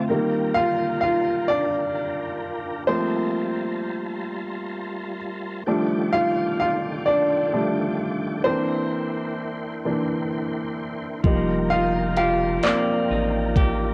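Yearning and late-night, this slow six-eight R&B excerpt at 43 BPM centres on an intimate, up-front grand piano solo with audible action noise, moving through chords such as F9sus4, Gm11 and Ebmaj9#11 over sustained tonewheel organ chords with chorus vibrato, key click and a fast rotary speaker, while a clean, picked electric guitar sounds briefly at the start and returns at 11.2 seconds with a deep, round analog bass and a produced electronic drum kit of knocking kick, handclaps and warm hats, the whole captured as a home cassette recording with light reverb.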